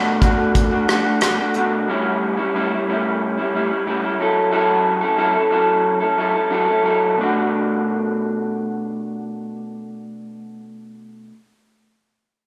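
A dark, slightly broken-up electric guitar through a small old amp provides the accompaniment in this wistful, mellow indie and bedroom pop fragment, picked up front from 0.0 to 11.3 seconds with a subtle chorus and vibrato coloring its lo-fi tone. A soft brush drum kit appears only briefly, from 0.2 to 1.7 seconds, with hi-hat, a tight kick and rim click, sounding distant and roomy under gated reverb. The piece moves at 91 BPM in a straight 4/4 in B minor, with the guitar moving through Bm7, A7 and F#m7 before returning to Bm7 at 7.2 seconds as a new section begins. A lush hall reverb bathes the recording, set within a bright 1980s-style digital production. Cut from a longer piece, it feels like a mellow moment caught mid-thought.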